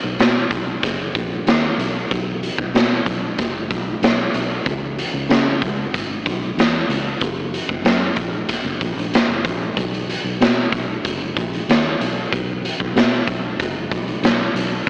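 A dark, round, foam-muted fingered electric bass with tube saturation opens this sunny, nostalgic bedroom-pop fragment at 94 BPM, joined at 0.2 s by an up-front, gritty garage drum kit of hi-hat, boomy kick and medium-tuned snare in a pumping, bright stone room, all heard through a blown-out, overdriven recording with an AM radio sound and a short, wet small-room reverb.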